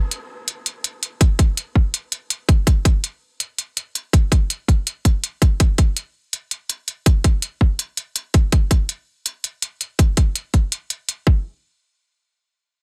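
Heavy and cinematic, this half-time drum and bass cut from a longer piece moves at 164 BPM in 4/4, with a 58% swing on the 16ths. Crisp, tape-warm electronic hi-hats open at 0.1 seconds, and an overdriven, hard-clipped electronic kick drum joins at 1.2 seconds. Both sit up front with a small-room character and little reverb, and the master is dense and heavily limited.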